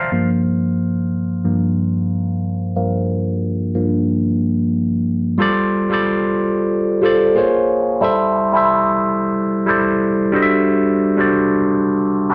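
A swung sixteenth-note feel at 91 BPM in 4/4 gives this short R&B cut from a longer piece its soulful, late-night lean, with the music centred on G dorian and tuned to A4 = 442 Hz. A single tine electric piano carries everything, playing alone from 0.1 seconds and ranging from G2 up to C6. Its tone is bright and barky, lightly overdriven through a combo amp and set up front, with a phaser and a slapback echo colouring the sound. The harmony opens on Gm7, then shifts at 5.4 seconds to G9sus4 before moving through Bbm7, Am7/G and finally D9/G. A wet studio reverb surrounds the piano, lending the brief passage a roomy, after-hours glow.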